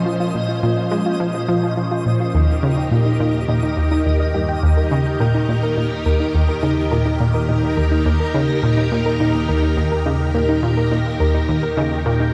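Dark production drenched in a huge ambient reverb frames this mysterious, hypnotic stretch of sequencer-driven space music at 105 BPM, where a detuned sawtooth analog pluck riff and a gentle, ring-modulated soft round pluck playing arpeggios, both chorused and fed through analog delay, sit alongside a swirling, vintage, up-front phased string machine whose sustained chords move from Bbmadd9 to Eb at 2.3 seconds, while a twinkling granular texture adds a sparkling octave-up shimmer.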